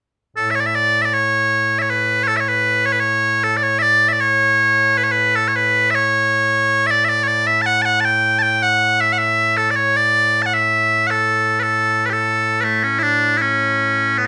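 Loud, piercing solo bagpipes sound from 0.4 s to 14.3 s in a stirring, ceremonial stretch of Scottish pipe music in 2/4, their continuous, bright tone held up front under moderate studio reverb in a rough home-demo mix, cut from a longer piece.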